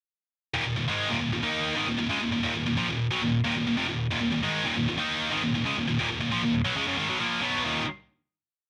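A bright, up-front solo electric guitar, high-gain, distorted and double-tracked, sits in a moderate studio reverb in this short, complete metal piece with a dark, aggressive mood. Picked in a straight 4/4, it drives a power-chord riff from 0.5 seconds, opening on an Eb5 chord and spanning Eb2 to Eb4. At 7.6 seconds the riff gives way to a final chord that closes the piece.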